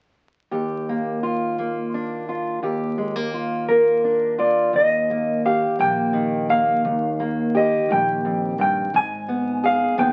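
This heartfelt, intimate folk fragment in Eb major moves at a slow 57 BPM in a straight 6/8, counted in dotted quarters and tuned slightly sharp at A4 = 441 Hz. A dark, fingerpicked steel-string acoustic guitar opens at 0.5 s on an Ebmaj7 chord, sitting up front with the body of an auditorium-sized instrument. At 3.7 s a mellow electric guitar enters with the melody, clean and fingered, its harmonic tremolo giving the tone a gentle shimmer as it sits above the accompaniment. A woody pizzicato upright bass joins at 4.7 s as the harmony settles on Eb, later shifting to Abm6 near the close. Moderate studio reverb surrounds the trio, and the sound carries the crackle and aged character of a very old 78 rpm record.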